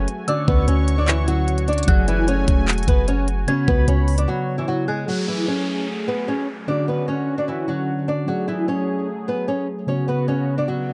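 A boxy, fingerpicked flamenco guitar carries the melancholic, eerie melody of this half-time trap excerpt in F# minor at 150 BPM, over a mellow tine electric piano, a smooth detuned analog pad with chorus, a deep boomy 808-style bass and a trap kit with knocking kick, crisp hats and handclaps that both drop out at 4.3 seconds, while a warbling FM synth bell with chorus, phaser and delay lingers in the background until 5.1 seconds, when an electronic downlifter and riser take over beneath the guitar, piano and pad in a dark, lightly reverberant mix.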